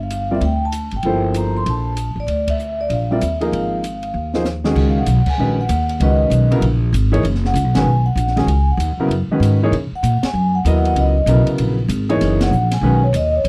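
A woody, thumpy pizzicato upright bass sits up front in this hypnotic, spiritual modal jazz piece at 193 BPM in a swung 4/4, alongside an intimate concert grand piano with audible action noise, a ringing vibraphone played with soft mallets and slow motor vibrato carrying the melody, and a dark, smooth drum kit with a high-tuned snare and punchy kick, in a dry, close 1970s-style studio sound, with a drum fill at 4.1 seconds leading into a C# dorian passage at 4.8 seconds.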